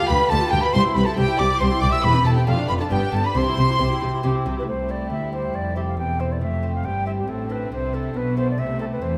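Dramatic and driving, this baroque-style concerto movement in C major moves at 138 BPM in 3/4, with an airy silver concert flute sharing the melody with a chamber violin section playing sul tasto with light vibrato, while a second violin line sits in the background. A delicate fingerpicked lute on doubled nylon strings and a smooth, distant viola section fill the accompaniment, and from 0.1 seconds a dark, expressive double bass section and a lush, focused cello section anchor the bass. The ensemble sits in a wet recital hall reverb, and the passage, cut from a longer piece, shifts into a new section at 4.7 seconds.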